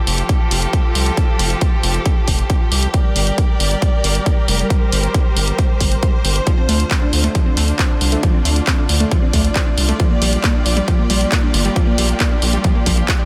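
A rich, bowed studio string section with vibrato opens this driving, emotional uplifting trance passage, its sustained chords filtered and pumping against a gritty, saturated synth bass and an up-front, tape-warm electronic kick. A punchy analog drum machine adds handclaps and hi-hat with the glow of a large room, while the chords move from Fadd9 through Gm, Dm7 and Bb6. At 6.5 seconds a lush, detuned unison pluck enters with delayed, pumping arpeggios, all set in a digital ambience, in a section cut from a longer piece.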